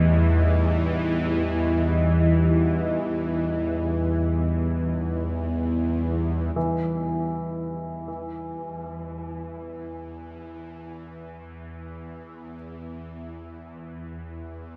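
A tense, string-like drone sits up front in this dark, ominous ambient fragment in free time, joined from the start by a deep, detuned sawtooth pad with chorus and a present grand piano playing low arpeggios through delay, all bathed in a vast cathedral reverb; the pad drops away at 6.6 seconds, leaving the piano and the phased, vibrato-laden drone, which fades in as the harmony dissolves until 14.8 seconds.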